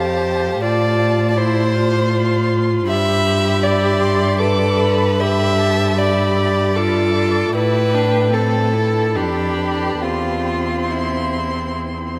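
A vast, echoing cathedral acoustic wraps this tender, serene slow romantic movement for string quartet, cut from a longer piece and moving in a rubato 3/4 at roughly 67-80 BPM. The melody sits high in the first violin, a rich, distant voice sung with vibrato, portamento and expressive shading across a range of G5 to D6. Closer and up front, the second violin carries a smooth, even second line in a lush tone until 11.8 s. The viola supplies clear, steady accompaniment in the middle register. Beneath them the cello, full-bodied and also up front, anchors the bass with vibrato and gliding portamento. The harmony drifts from F through G and G9 to Am7, then G7/F, settling on C/E at 10.0 s.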